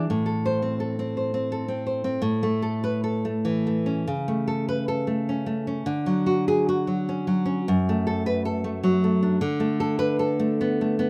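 A rough home demo with a small-room ambience places a fingerpicked nylon-string guitar up front, its fresh strings lending the classical tone a warm, acoustic character. This intimate, passionate romantic piece for solo guitar moves in a flexible, rubato three-beat metre. It opens on an A minor chord, then shifts at 2.2 seconds into a new section that passes through Dmaj7 and Bm7/D before the 11.1-second passage, cut from a longer piece, breaks off.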